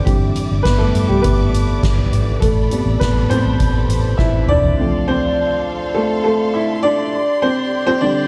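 A straight 4/4 pulse at 102 BPM drives this hopeful piano-driven pop fragment, cut from a longer piece and tuned to A4 = 438 Hz. An upright piano with a woody, boxy tone and long sustain sits up front, carrying the accompaniment across the full 8.3 seconds through chords moving from Cadd9/G and Amadd9 to F and Gsus4. Beneath it, a vintage muted fingered electric bass, round, punchy and foam-muted, holds the low end until 4.7 seconds, while a soft-mallet drum kit with a boomy kick and medium-tuned snare plays until a fill closes its part at 4.8 seconds. A distant, lush string section adds bowed sustained chords with vibrato and portamento throughout, lending an expressive glow. After the drums and bass drop out, the piano and strings carry the second section on their own, all framed by light reverb in a dark production.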